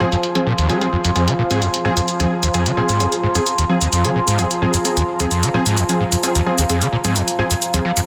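Hypnotic and relentless, this driving peak-time techno excerpt runs at 130 BPM in F minor, holding a single F minor chord in a dense, heavily limited mix bathed in a moderate lush hall reverb. Up front, a screaming, squelchy acid riff with resonant filter sweeps, distortion, analog chorus and tape echo sits beside thick, detuned rave stabs coloured by ring modulation and a cassette-tape grit. Beneath them, an overtone-sweeping nasal drone and a warbly, nostalgic lo-fi pad with phaser sustain throughout, while electronic hi-hat and shaker, tape-warm and re-recorded in a small room, enter at 0.1 seconds.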